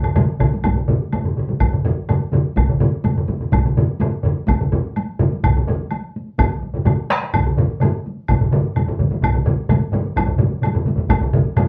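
A straight 4/4 pulse drives this short cut from a longer Japanese traditional taiko drum ensemble piece, and the ensemble speeds up across its 11.7 seconds, giving the music a driving, ceremonial mood. Four taiko ensemble parts fill the sound: two struck with hard sticks, one close and dry sitting in the background and one up front with a vintage, band-limited character. Two more are played with heavy sticks, one up front carrying the air of a live room and the other close and dry, entering at 0.4 seconds and stopping at 11.2 seconds. A woody woodblock, heard in a small room, runs alongside the drums from start to finish. The players perform together in one space with a wet studio ambience, so the hits carry a short, lively tail.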